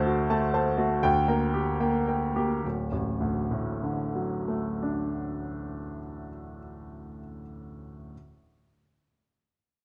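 A classical virtuoso piano study in 6/8, heroic and brilliant in mood, played with free rubato by a clear baby grand piano heard alone and up front, ranging from the deep bass up into the treble. The opening slows as the harmony moves from D7 through Gm/D, arriving on D at 2.6 seconds where a second section begins. The piano stops at 8.1 seconds in this short cut from a longer piece, set in a moderate scoring-stage reverb with a dark, warm production.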